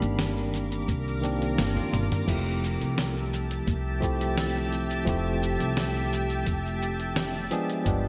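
A straight 4/4 groove at 86 BPM carries this blissful sunset chillout excerpt in F major, cut from a longer piece. A gritty, tape-warm sampler-style soul drum kit sits up front with a fat snare, hi-hat, cabasa, toms and crash cymbal under gated reverb, and a thumpy electronic kick joins in the background at 0.9 seconds. A woody pizzicato upright bass holds the low end while a clean tine electric piano plays accompaniment up front with delay. Behind them, a shimmering, ethereal ambient pad with an octave-up shimmer and a detuned, warbling vintage character sustains chords through chorus and its own reverb. A very quiet electronic swell and a drum fill arrive before the harmony moves from Cm9 to Fmaj9 at 2.3 seconds, with a G7b9 near the close. A lush hall reverb and bright 1980s-style digital production tie the sound together.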